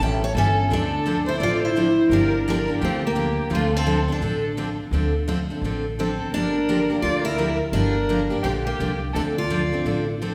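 A bright, up-front picked steel-string acoustic guitar carries the melody over a second, full-bodied dreadnought guitar's accompaniment and a woody, dark pizzicato upright bass in this swinging, bittersweet jazz manouche excerpt at 171 BPM in D minor, with a distant bowed violin entering at 0.3 s to add an expressive second line rich in vibrato and portamento as the harmony moves from A7 to Dm7 and Gm7, all set in the wet reverb of a recital hall.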